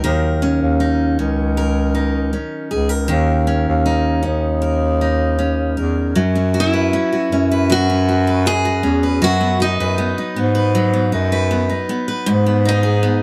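Acoustic pop in a wistful, reflective mood, this short excerpt moves at an unhurried 78 BPM in a straight 4/4. A picked steel-string acoustic guitar with a warm, auditorium-sized body sits up front from the start, carrying the accompaniment. A clear bass clarinet joins at 0.1 seconds to hold down the bass line in a solo, jazz-style voice, its tone shaded with vibrato and scooped notes. At 6.6 seconds a bright, picked archtop guitar enters with the melody, and finger squeaks add a close, human touch. The harmony drifts through F#sus4 and B/F# before settling on G#m, and the dry sound leaves each instrument plainly audible.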